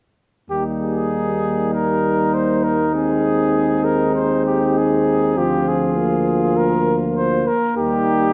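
Triumphant and noble, this short classical brass quintet passage moves at 99 BPM in 4/4 with a rubato feel in Eb major, cut from a longer piece and heard from 0.5 to 8.3 seconds. A mellow cornet sings the melody up front with light vibrato and a soft attack, while a distant, punchy flugelhorn carries the second line and a French horn sits in the background beside a warm trombone in the accompaniment. A clear, vintage-toned bass trombone anchors the bass as the chords move from Eb through Ab/Eb and Bb7/D back to Eb, all in a moderate concert hall reverb.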